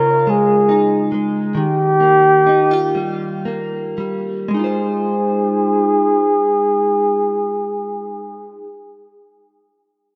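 Romantic and heartfelt, this fragment of a longer six-eight pop ballad in Ab major moves at a slow 35-49 BPM in dotted quarters, with a straight feel and tuning set to A4 = 436 Hz. A breathy, mellow flugelhorn carries the melody up front in a jazz style, its vibrato and scooped notes giving it a vintage character within a narrow range from G4 to Bb4. Beneath it, a clean, picked electric guitar, recorded direct, compressed and double-tracked, provides the accompaniment across Dbadd9 and Ebadd9 chords. The tempo slows through the first 4.5 seconds, after which the piece moves into a new section that settles on Ab6. A lush hall reverb with a 2.5-second decay surrounds the rough, homespun demo mix.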